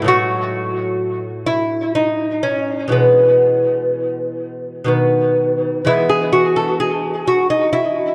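A bright, delicate solo lute with gut double strings, some of them octave-doubled, is fingerpicked up front in this radiant, flowing baroque-style classical dance in 3/4 and E major, unfolding with rubato at 60-66 BPM through chords from F#m/A to E/B, B and E, its diffuse ambient delay and 2.5-second plate reverb giving this short fragment of a longer piece a dreamy, reverb-soaked glow.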